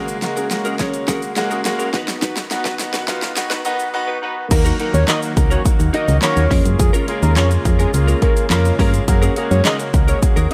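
Dance-pop, bittersweet and energetic, cut from a longer piece, where a brilliant grand piano, a smooth detuned pad with chorus and tremolo, and a clean, direct-recorded electric guitar riff build over punchy pop drums with a drum fill and a grainy background shaker until the drop at 4.5 seconds brings in a round, dark FM bass and a fat, wave-folded sawtooth lead with vibrato and delay, while sidechain pumping makes the piano, pad, lead and bass breathe against the kick in a digital ambience.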